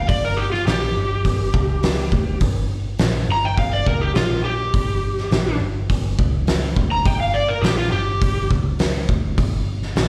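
An overdriven slide guitar takes the lead in this raunchy, driving blues rock clip with a southern rock edge, its bright, up-front solo touched with slapback echo and running until 8.5 seconds. Beneath it, a vintage picked electric bass sits low with a dark, round, foam-muted tone that keeps going to the end at 10.1 seconds. An oversized, low-tuned drum kit drives the straight 4/4 feel with a fat snare, punchy kick and hi-hat, its sound gritty and saturated, recorded in a stone room and pushed forward in the mix. The whole thing plays like a power trio at a live gig heard through the venue's PA, with a light club reverb hanging around the band. Cut from a longer performance, it captures a single section built around a G5 chord, where the slide solo carries all the attention.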